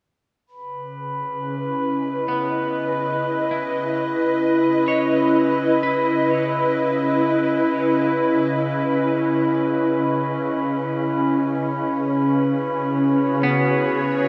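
Ambient music in free time and C# minor, spacious and reflective, cut from a longer piece and resting on a C#m7 chord. A glassy, ethereal glass harmonica texture appears at 0.5 seconds, joined at 1.1 seconds by an up-front wavetable pad holding sustained, morphing chords through ensemble chorus and its own reverb. From 2.3 seconds a clean, hollow-bodied semi-hollow electric guitar fades in with arpeggios soaked in diffuse ambient delay, playing until 8.4 seconds and returning at 13.4 seconds. A lush hall reverb and dark production give the sound a deep sense of space.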